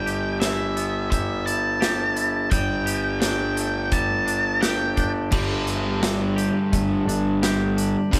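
A dark, fuzzy octave lead guitar opens this euphoric, soaring post-rock passage, carrying the melody high over a twangy, scooped clean guitar picking arpeggios and a round, overdriven fuzz bass anchoring the low end on G. A big, acoustic rock kit comes in almost at once, with bright cymbals, a punchy kick, a medium-tuned snare and hi-hat set up front in the mix. The piece moves at a straight 86 BPM in 4/4 in G major, with the harmony shifting from Em/G to Gsus2. The lead guitar's tape echo trails its distorted line until it drops out at 5.1 seconds, and at 5.3 seconds a cranked, bright stack guitar takes over with an overdriven riff pushed to the front. The whole band sounds as though it is playing live in one stone room, its moderate reverb giving the cut from a longer piece a sense of size and air.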